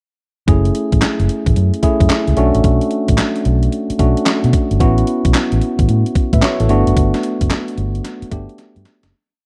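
A dry, close 1970s-style studio sound touched with digital ambience frames this short, confident and bouncy new jack swing piece at 111 BPM in 4/4, swung hard on the sixteenths over a verse that moves through F#m9, Bm7, A6 and Gmaj9. Up front, a gated 80s drum machine drives the beat with a thumpy kick, hi-hat, and a gated-reverb snare layered with handclaps, all sampler-style and tape-tinged as if re-recorded in a large room. A dark, round, foam-muted fingered electric bass plays a swung synth-funk line with ghost notes, and a clean tine electric piano, heard through its built-in speakers, pushes rootless chords with short fills before the fade-out from 7.0 seconds and a closing drum fill at 8.6 seconds.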